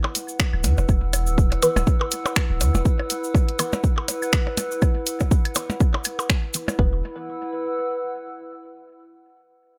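Quirky and hypnotic, this short minimal techno excerpt moves at 122 BPM in 4/4 with a 57% swing on the sixteenths, over an E5 chord. A warbling, nostalgic lo-fi pad built from detuned square, triangle and sine tones sits underneath, wave-folded with a slow attack and long release, mellowed by chorus and its own reverb, and pumping against the kick before it carries on alone after the other parts stop. An overdriven, punchy electronic kick and a layered house kit of finger snaps and bright hats sit up front, joined by electronic blips and claves with tape echo and a grainy, compressed acoustic tube shaker. A deep sine sub bass with a pitch-drop attack pumps beneath from 0.5 to 2.8 seconds and returns briefly at 6.8 seconds. From 1.6 seconds a muted, nasal, detuned sawtooth chord stab plucks through a resonant filter with a moving notch, colored by phaser, analog chorus and tape echo. The mix is dry, with little reverb.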